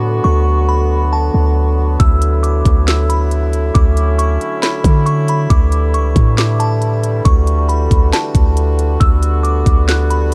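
A mellow, distant brass ensemble holds sustained chords over a deep, boomy 808-style bass from the opening, with a glassy, crystalline synth bell melody arriving at 0.2 seconds, treated with chorus, a low-pass filter and delay. At 2.0 seconds an up-front trap drum kit enters with a knocking kick, sharp snare and crisp hats, settling this blissful, floating cloud-rap piece into a half-time feel at 137 BPM in D major. The chords move from Bm7 through D69 and A7sus4 to Gmaj9/D in a dry, close sound, and the passage is cut from a longer piece.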